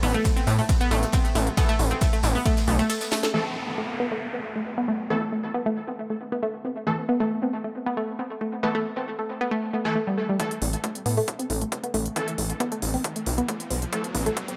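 Driving peak-time techno in A minor at 136 BPM, this dark, intense excerpt opens on a drop where a punchy, up-front electronic kick, an overdriven techno kit with a cracking snare and smooth hats, a background acoustic kit with a tambourine, and a gritty, aggressive distorted sawtooth bass drive together beneath a round, nasal analog pluck riff coloured by chorus, phaser and tape echo. The kick, bass and drums fall away by 3.3 seconds, leaving the pluck alongside a thick, warbling detuned rave stab and a downlifter while a filter sweep unfolds. The kick and techno kit return at 10.4 seconds and the bass at 10.6 seconds for a build-up crowned by a riser running from 11.5 to 14.6 seconds, all set in an echo-heavy mix with light small-room reverb.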